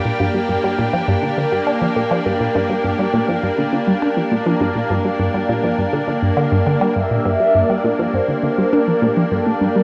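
Soaked in wet spring reverb and a digital ambience, this home cassette recording of cosmic, hypnotic, sequencer-driven space music holds on a single G minor chord. A juicy, squelchy blip pluck with phaser and analog delay sits up front beside a lush, thick unison pad with chorus, while a very quiet bubbling texture of random filter steps bubbles underneath. At 7.0 s a mellow, round horn-like lead with 12-bit sampler grit enters, before the excerpt cuts off.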